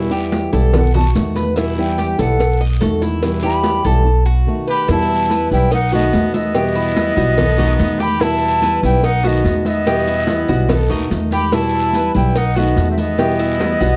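A mellow, airy jazz flute with vibrato carries the melody in this nostalgic, sultry slice of Cuban son and guajira at 145 BPM in 4/4, taking a solo through the opening stretch before a bright, punchy trumpet with pop-style vibrato joins as a second line at 4.7 seconds. Beneath it, a fingerpicked flamenco guitar accompanies, a metallic, double-strung Cuban tres with slapback echo picks arpeggios, and a woody, thumpy pizzicato upright bass sits up front, while ringing high-tuned congas, a tight cowbell, a raspy guiro and grainy maracas fill out the percussion, the last three in the background. The harmony sways between E minor and B7, captured in a dry, close 1970s-style small room.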